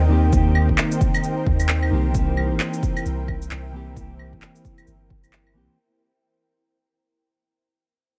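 Lightly reverberant and dusted with vinyl crackle, this rainy, nocturnal future garage excerpt at 132 BPM swings its 16ths and fades out across its full 5.8 seconds, moving from Eb6 to C7 at 2.1 seconds. A dark, clean, fingered electric guitar with phaser and tape echo pumps against the sidechain alongside an ethereal, detuned pad whose slow-attack chords bloom through ensemble chorus and reverb. Beneath them sits a deep, round 808-style bass up front, while a punchy, layered kick enters at 0.3 seconds with tape-tinged electronic shaker, claves and handclaps.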